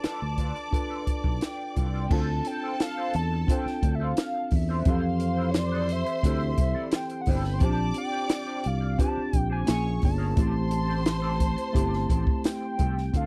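A compact cocktail drum kit sits up front with a punchy kick, high-tuned snare and dark cymbals, anchoring this cinematic, silky slice of lush 1970s-style soul at 87 BPM in A minor, joined by a round, fingered electric bass. A worn, slightly out-of-tune tine electric piano carries the chords, while a lo-fi, slightly broken-up electric guitar with wah and chorus plays a riff, and a hollow, woody square lead with vibrato and chorus sings the melody alongside a bowed studio string section that drops away at 12.8 seconds. The dry, close recording moves through Dm7, Fmaj7 and Bb69 before settling on Am7 at 10.4 seconds.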